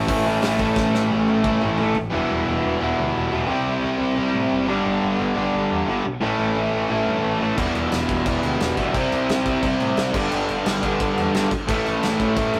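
A rough rehearsal-room recording with light reverb and warm saturation carries this rebellious, energetic punk rock fragment, cut from a longer piece and moving through Em, C, G and A. Two bright, up-front picked guitars drive the riff, one distorted, double-tracked and compressed, the other overdriven, while a very quiet sludgy guitar and a growling overdriven bass sit underneath. The loose indie drum kit, with dark cymbals, a tight kick and a pumping small-room sound, plays a fill before dropping out at 2.0 seconds and returns at 7.6 seconds.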